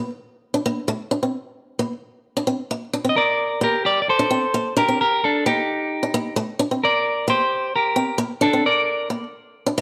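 Highlife at 132 BPM in Bb major, this warm, danceable excerpt opens with a bright, boxy picked acoustic guitar in a swing style, its finger squeaks audible under plate reverb as it moves from an unaccompanied start through Bbsus2. At 3.1 seconds a clean electric guitar enters up front with the melody, its warm tone carrying spring and plate reverb, while the harmony passes through Bbmaj9, Gm and Ebmaj7#11 before settling back on Bb. The moderate studio room surrounds both up-front guitars until the electric line ends at 9.1 seconds.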